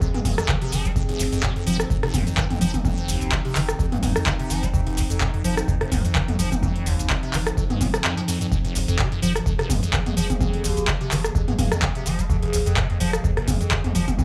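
This trippy, raw acid house excerpt sits on an F minor chord and runs at 127 BPM with a 55% swing on the 16ths. It opens with a squelchy, resonant acid bass riff treated with phaser, tube saturation, chorus and tape echo, alongside a deep analog kick, an up-front drum machine of metallic hats, handclaps, rim clicks, shaker and toms, and a dark, detuned, warbling lo-fi pad holding sustained chords, all in a light small-room ambience. A round sine sub bass joins at 0.2 s, the pad, acid line and sub pump from sidechain compression, and the kick briefly drops out from 8.0 to 8.5 seconds.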